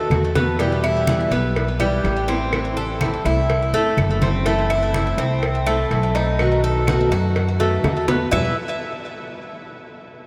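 Latin Cuban son and guajira at 124 BPM in E harmonic minor, this warm, nostalgic excerpt from a longer piece sets a metallic, double-strung Cuban tres playing arpeggios with delay up front beside a thumpy, woody pizzicato upright bass, while a full-bodied, fingerpicked nylon-string guitar with ensemble chorus and audible finger squeak supplies accompaniment through Em, Am, F#m7b5 and B7 before landing on E5 at 8.3 seconds. Low-tuned, thick-skinned congas and tight, high-tuned cowbell and bongos sit in the background, very quiet claves tick along, and drum fills arrive at 0.4 and 7.8 seconds, all of it bathed in a huge, dreamy ambient reverb.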